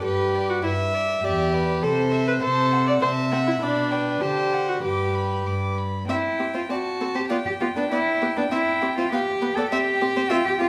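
In a brisk 2/4 at 100 BPM, played with a flexible rubato, this graceful, spirited classical-period movement for string quartet opens in G major and moves to C major at 6.1 s, tuned to A4 = 438 Hz. All four players bow gut strings in period style with a reedy edge. The first violin carries the melody across a range of B4 to D6 with a rich tone and light vibrato. Beneath it, the second violin sings an airy-bowed, somewhat nasal second line, close to the listener. The viola fills in the accompaniment with a smooth top, and the cello anchors the bass with rich, close-miked depth from E2 to A4; these two lower voices sit up front. A recital hall's reverb, lasting around 1.6 s, surrounds the ensemble in this short segment cut from a longer piece, which ends on a bare C5 at 9.7 s.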